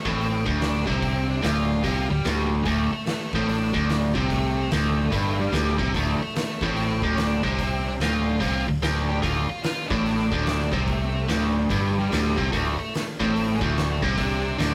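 A biting, double-tracked overdriven guitar sits up front with a low picked riff in this brooding, heavy slice of power-trio blues rock and southern rock, played with a swung 4/4 feel. A dark octave-fuzz lead guitar carries the melody over a round, foam-muted fingered bass and an oversized low-tuned drum kit with a fat snare and punchy kick, its gritty sound pumping in a bright stone room. The rough rehearsal-room recording adds light reverb and warm saturation, and the four parts play from the opening moment through to 14.7 seconds.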